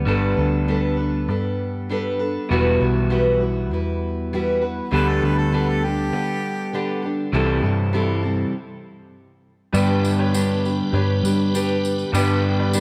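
Opening on picked steel-string acoustic guitar with finger squeak, a twangy, slightly broken-up electric guitar riff and a round, hollow-body electric bass, this jangly 99 BPM folk and heartland rock excerpt gains a light-vibrato harmonica line from 4.9 to 7.0 seconds, stops at 8.5 seconds, then returns at 9.7 seconds with a woody upright piano in the background, a piping tonewheel organ through a slow rotary speaker, and a jingly tambourine, all set in a moderate concert-hall reverb with a dark, warm production.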